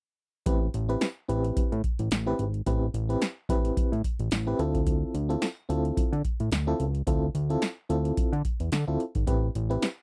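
A dry, close studio sound frames this late-night, danceable slice of early-eighties boogie funk, with a gently swung sixteenth-note feel moving from Am9 to Dm9 and back. An overdriven electro analog drum machine sits up front with a deep kick, punchy snare and metallic hats, beside a fat, detuned sawtooth-and-square analog bass and a mellow FM electric piano whose tremolo and faint noise layer shimmer over the chords. A jingly tambourine, very quiet, joins at 1.0 seconds.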